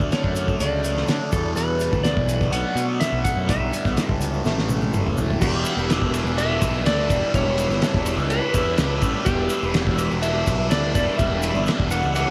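A straight 4/4 groove from a muffled, cloth-damped drum kit with a fat snare, tight kick and dark cymbals drives this trippy, hypnotic psychedelic rock excerpt, alongside a punchy, round fuzz bass, a grainy tube shaker in the background and a bright, double-tracked fuzz guitar riff coloured by phaser. Above them, a dark, clean lap steel plays a slide melody with fingerpicks and volume swells through tape echo, while a reedy combo organ holds very quiet sustained chords with heavy vibrato. A drum fill at 4.5 seconds leads into a new section at 5.4 seconds, all bathed in a huge, dreamy ambient reverb.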